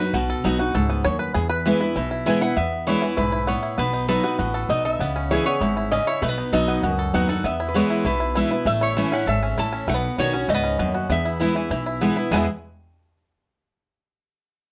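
Set in a moderate studio reverb, this joyful, driving bluegrass excerpt in E major runs at a quick 197 BPM in a straight 4/4, cut from a longer piece. A twangy, percussive banjo played with fingerpicks carries the melody up front, with a brief five-string banjo solo opening the first 2.6 seconds, while a bright, picked steel-string acoustic guitar sits close alongside it in accompaniment and a woody, thumpy pizzicato upright bass anchors the low end. At 2.3 seconds a metallic, nasal lap resonator guitar played with slide and fingerpicks joins the melody, riding above the changes that move through C#m7, A and Badd9 before settling back on E.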